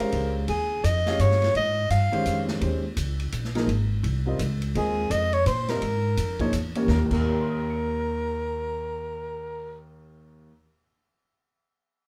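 Spiritual and searching in mood, this short modal jazz fragment moves at a brisk 169 BPM in a swung 3/4, centred on Eb mixolydian and tuned slightly sharp to A4 = 441 Hz. A breathy soprano saxophone carries the melody up front, its mellow, whispered tone softened by vibrato and scooped notes. It falls silent at 2.4 seconds and returns at 4.8. A polished grand piano supplies warm, present accompaniment across a broad register, while a woody pizzicato upright bass on steel strings sits up front in the low end. An open acoustic drum kit with dark cymbals, a medium-tuned snare and a boomy kick plays until 7.2 seconds, shortly after the harmony shifts from a suspended Eb9sus4 to a plain Eb chord at 6.9 seconds. A wet club reverb places the ensemble further back in the room.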